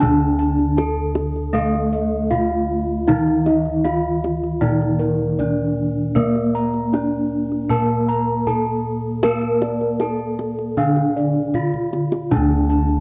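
A lightly reverberant home cassette recording catches this hypnotic, shimmering Javanese gamelan excerpt in D pelog at 78 BPM, where a ringing, up-front bronze metallophone with a tape-colored tone carries the melody over a bright, horn-mallet metallophone accompaniment, dark, smooth bossed gongs spin arpeggios while full, close-miked gongs hold the bass, and a tight, soft-handed kendang plays throughout before its short fill at 11.7 seconds.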